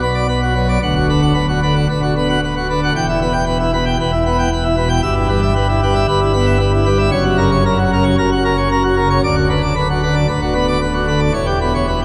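A full, brilliant pipe organ plenum, its mixtures and baroque voicing placed up front, plays a majestic and stormy classical toccata alone across 12.0 seconds, reaching from deep bass notes up to the treble, its minor-key harmonies ringing into a long, wet cathedral reverb in this fragment cut from a longer piece.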